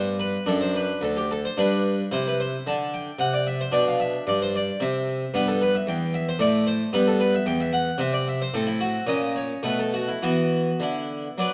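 Serene and flowing, this short portion of a longer baroque-style suite movement in 3/4 moves at 111 BPM with a rubato feel, opening in G major before turning toward E minor from 5.3 s. A solo harpsichord in the Flemish style, with two sets of strings, sounds airy, plucked and full, spanning D2 to A5 and sitting up front under close, detailed microphones. A moderate recital hall reverb of about 1.7 seconds surrounds it as the harmony darkens through a diminished chord and a suspended B7 before settling on E.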